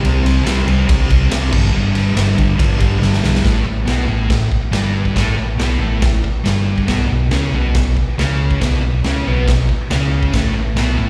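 A double-tracked fuzz guitar sits up front in this swaggering, menacing garage rock excerpt, its picked, distorted riff running between G2 and C#4 at a straight 140 BPM in 4/4. Underneath, an overdriven fingered electric bass adds a round, punchy, amped low end, while a raw garage drum kit of kick, snare, ride and crash sounds gritty and saturated, with a punchy kick, a medium-tuned snare, a rolled-off top and a bright stone room that pumps. The opening moves from C5 to G5 power chords. A drum fill at 3.0 seconds leads into a second section at 3.5 seconds, where the harmony shifts through Gadd9 and Bsus2 before settling on a rootless Gadd9. The whole performance comes across as a live gig heard through the venue's PA, carrying a recital hall reverb.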